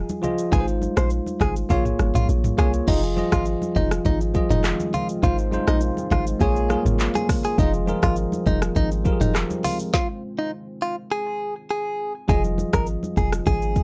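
A bright, compressed clean electric guitar carries the melody in this mellow, smooth afrobeats excerpt, colored by harmonic tremolo and analog delay over a bell-like tine electric piano and a round, percussive log drum bass. An electronic afro-pop kit with a deep kick, woody snare and metallic hats sits up front, with soft-handed congas in the background, and a very quiet, detuned sawtooth pad enters at 4.3 s. The dry, gritty sound carries transformer saturation, and a stop from 9.9 s gives way to the return of the Fm7 chord at 12.3 s.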